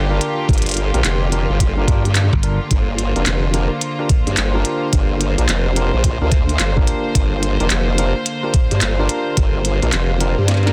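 A soft-attack string section and a formant-sweep wobble bass open this playful, funky glitch hop excerpt together, settling on a G minor seventh chord at 108 BPM with a 16th-note swing. The bowed strings hold sustained chords from a distant, floating place, pumping with the sidechain. The wobbling bass sits up front with a bright chorus and overdrive. A clean tine electric piano adds stabs through its built-in speakers, with its repeats trailing on a delay and pumping with the sidechain. A glitchy electronic kit brings clicky hats, a tiny snare, rim clicks and handclaps in studio reverb, and a pitched-down, gritty, thumpy kick anchors the groove until 9.5 seconds. A growly, foam-muted thumbed slap bass pops in briefly at 2.3 seconds, a drum fill arrives at 10.5 seconds, and the dense, heavily limited mix carries little reverb overall.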